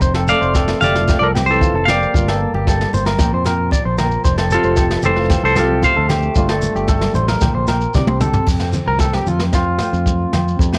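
A bright, clean semi-hollow electric guitar carries the melody up front in this joyful, danceable highlife excerpt, joined by a mellow, jazz-style trombone that plays a second line in the background with vibrato and scooped notes until both fall away at 7.9 seconds. Underneath, a twangy, slightly broken-up electric guitar through a small old amp picks compressed arpeggios with plate reverb and analog delay, while a dark, full-bodied nylon-string guitar fingerpicks classical-style accompaniment further back. A round, dark fingered electric bass anchors the straight 4/4 groove at 113 BPM in F major, moving through F, Gm7 and Bb before a Csus2 turns back home. A jazz kit played with brushes, with dark cymbals and a boomy kick, keeps the rhythm and moves into a drum fill at 8.0 seconds. Grainy shekere, ringing agogo bells and very quiet, thick-skinned congas struck with hard hands add a lively percussion layer. 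At 8.5 seconds a clean electric guitar solo begins, and the whole home cassette recording carries a light reverb and a lo-fi tape character.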